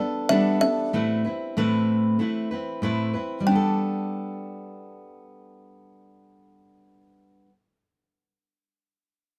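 Carefree and easy-going, this short pop passage, cut from a longer piece, moves at an unhurried pace in a straight four-beat feel. A fingerpicked steel-string acoustic guitar carries the accompaniment, its jumbo body giving a warm, woody, full-bodied tone with the character of old strings, and it sits up front in the mix. Above it, a kalimba plays the melody in a narrow upper range, its thumbnail plucks ringing out from a hollow box with a mid-forward presence. The harmony shifts from Gadd9 to Amadd9 and back to Gadd9 at 3.5 seconds, where a second section begins. Both instruments play together throughout, and the dry sound keeps the intimate character of each clear.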